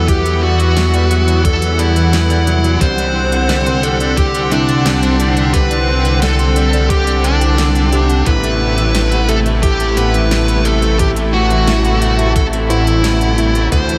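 A dark, overdriven lead guitar carries the melody up front through diffuse ambient delay over a detuned sawtooth pad with chorus, tremolo and sidechain pumping, a slightly broken-up electric guitar picking background arpeggios, soft, warbling FM electric piano stabs and a glossy pulse-width synth bass that also pumps, while from 0.1 seconds a thumpy, tape-tinged electronic kick and a pop kit's fat snare and crisp hats drive this nostalgic 88 BPM synthwave excerpt through Emadd9, Csus2 and Amadd9, the whole mix soaked in dreamy cathedral reverb.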